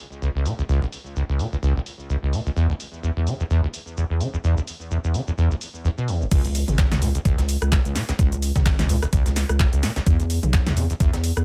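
Acid house with a trippy, gritty mood, cut from a longer piece: a punchy, overdriven analog drum machine with crash, handclaps, hats, rim click, shaker, snare and toms runs under a squelchy, resonant sawtooth acid bass riff dressed in lush chorus, tape echo and sidechain pumping, all in light reverb. At 6.3 seconds the drop arrives as a deep, thick sine sub bass, a thumpy tape-warm kick up front and a compressed breakbeat kit with a high-tuned snare tucked in the background join in, shifting the harmony from Bsus2 and E5 to C#5 before returning to E5.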